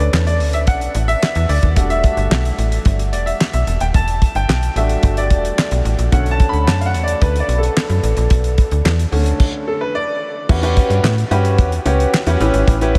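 A straight 4/4 groove at 110 BPM drives this slick, danceable early-eighties boogie funk excerpt in E dorian, where a damped 70s drum kit with a fat snare, tight kick, handclaps, hi-hat and crash sits beside a snappy, metallic slap-like FM bass, while a clear, intimate baby grand piano with lush chorus and audible action noise takes a solo over Bm9 and Em11 until a stop from 9.4 to 10.5 seconds, after which the harmony moves through Em69 to A9, all inside a dreamy mix soaked in huge ambient reverb.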